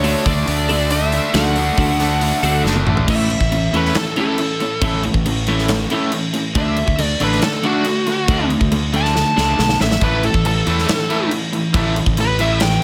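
A straight 4/4 pulse at 138 BPM opens in half time under a brooding, cathartic quiet-loud alternative rock excerpt, where a smooth, dark overdriven lead guitar carries the melody and breaks into a solo at 3.1 s over chords moving from D to A, while a bright, twangy twelve-string electric guitar with subtle chorus picks arpeggios until 10.0 s, a compressed overdriven guitar and a raw garage guitar drive background riffs, a growly fuzz bass adds heft, and a punchy, up-front big rock drum kit with bright cymbals throws in fills, all set in light reverb and small room ambience.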